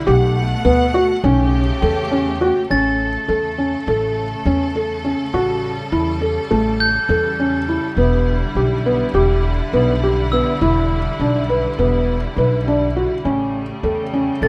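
In a straight 9/8 at 205 BPM in eighths, this hypnotic, pensive contemporary chamber piece, tuned to A4 = 436 Hz, sets a felt-muted upright piano's dark, intimate arpeggios, with audible action noise, up front beside a woody, thumpy pizzicato upright bass, over lush, vibrato-rich sustained chords from a clear symphonic string section, while a bell-like glockenspiel played with soft plastic mallets enters at 2.7 seconds with dry, ringing texture, all in light reverb and close, detailed sound moving from Gmaj9/B and A7/B through A7 and Em7.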